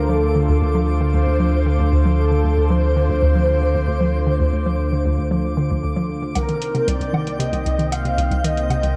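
A cosmic, expansive haze of plate reverb and tape echo opens this short excerpt of ambient, sequencer-driven space music, where a breathy, flute-like synth lead with vibrato and a cassette-worn chorus carries the melody over a lush, warbling unison pad. Beneath them a hollow, bouncy square-wave pluck repeats a riff through echo, a round analog bass holds the low end, and a faint granular texture sparkles high above. At 6.4 s, as the chords move from Dm7 to Cm7, electronic hi-hat and woodblock enter with metallic, echoing hats.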